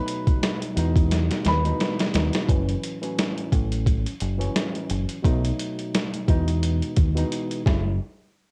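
A dark upright piano and a worn, slightly out-of-tune electric piano open this tough, moody boom-bap hip-hop cut from a longer piece. The woody upright carries a short, intimate melody with audible action noise, soaked in tape grit and analog delay, before falling away at 2.5 seconds. Beneath it the electric piano keeps up a clean accompaniment through its built-in speakers over a B7, Emaj7 and F#m7 cycle. The sampler-style drum kit sits up front with a thumpy kick, a medium-tuned snare and hi-hat, sounding compressed, pitched down and re-recorded in a large room, with fills along the way. From 0.8 seconds a deep, round fingered electric bass with transformer saturation joins the drums at the front of the mix. The dry, swung home-cassette sound gives the whole piece a dusty, lo-fi character.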